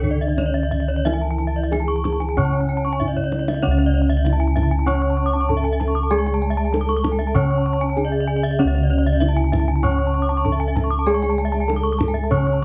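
Dark, round bossed gongs sit up front, carrying the bass of this brilliant, hypnotic Balinese gamelan passage cut from a longer piece, while a deep kendang stays in the background and plays a fill from 3.0 to 3.6 s. Around them, several bronze metallophones in paired tuning spin shimmering beats: one played with padded disc mallets sounds mellow and soft, while others struck with horn mallets ring bright, two of them also airy. Together they weave a melody, a lower accompaniment and two high arpeggio lines in a dry sound.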